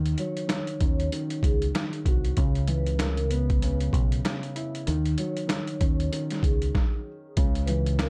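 Gritty and reflective, this boom-bap hip-hop excerpt moves with a swung sixteenth-note feel over chords that alternate between D#m7 and C#m7. A sampler-style drum kit sits up front, compressed and pitched down, with a thumpy kick, a medium-tuned snare and hi-hat carrying a tape-warm, small-room grit. Beneath it, a deep dub fingered electric bass plays round and punchy in the low register, while a dark upright piano adds mellow, woody, slightly boxy accompaniment, filtered at both ends. A soft-mallet vibraphone floats a quiet melody above, metallic and ringing with slow motor vibrato, filtered and touched with analog delay for an airy shimmer. Very quiet finger snaps enter at 0.5 seconds, close and human, and the groove breaks into a stop from 6.7 to 7.4 seconds under light reverb and a dark, warm production.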